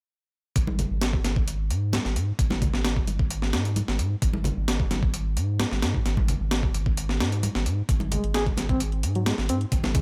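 A straight 4/4 breakbeat groove drives this energetic, funky clip at 131 BPM in Ab major, cut from a longer piece. Up front, a sampler-style breakbeat kit lays down a thumpy kick, a medium-tuned snare and hi-hat, its compressed, overdriven sound carrying the character of a small room. Beneath it, a deep, thick sine sub bass with a saturated edge and sustained notes runs from Ab1 to Ab2, shaped by a filter sweep for the whole passage. Ringing acoustic congas played with hard hands sit in the background from 0.7 seconds, and a bright, layered electronic hi-hat joins them at 7.9 seconds. At 8.1 seconds a reedy, gritty electric piano riff arrives through a combo amp, colored by fast tremolo and tape echo, with the overall sound kept dry and close.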